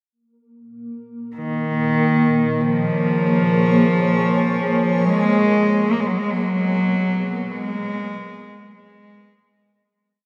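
A reedy, gut-string cello in period style plays a free, bowed melody up front with delay from 1.4 s, over a granular cloud pad of blurred, detuned sine tones that slowly shifts from Bbm7 to Abm with shimmer reverb, in a desolate, unsettling ambient piece at 49 BPM in Bb phrygian, set in a huge, wet reverberant space and fading out from 5.0 s.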